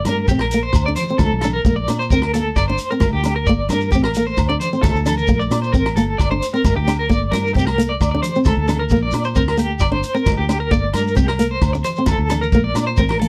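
Highlife guitar band music in G minor at 132 BPM in a straight 4/4, warm and danceable, this cut from a longer piece cycles through G minor, D5 and B-flat chords. Up front, a twangy electric guitar on the edge of break-up picks arpeggios between G4 and D5, colored by tremolo and slapback echo. Beneath it, a foam-muted fingered electric bass sounds dark and round, while a fingerpicked flamenco guitar adds acoustic accompaniment in a lower register. A vintage drum kit with a punchy kick, hi-hat and rim click carries a rolled-off top, and it closes with a drum fill from 13.0 seconds. Ringing agogo bells and a grainy, mellow shekere sit in the background, with distant, high-tuned congas played with hard hands very quietly. The sound is dry and close, in the manner of a 1970s studio recording with little reverb.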